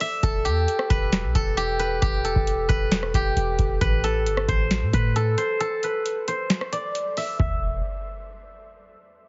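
A half-time 4/4 groove at 134 BPM in E minor drives this dark, eerie trap excerpt, where a booming analog drum machine with deep kick, tonal snare and metallic hats sits under a clean, sine-like 808-style bass moving from Em to Am, while an up-front, silvery steel-string zither carries the melody through a low-pass filter and tape echo, all squeezed into a dry, heavily compressed radio-like sound before the parts drop out by 7.8 seconds.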